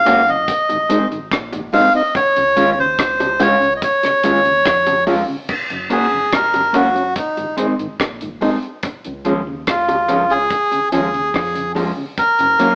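Roots reggae at 72 BPM in Db major, this sunny excerpt is led by an up-front, reedy and breathy melodica that takes a solo from 5.5 s, with a round, dark fingered bass sitting in the background. A clean, fingered electric guitar and a mellow tonewheel organ with key click and slow rotary speaker fill in the accompaniment, while a dry reggae drum kit with a tight kick, rim clicks and rolled-off top carries gritty 12-bit sampler texture, and high-tuned bongos struck with hard hands add percussion. The band sounds as if playing live together in a stone room with a one-second reverb, dulled by a cassette and AM radio character.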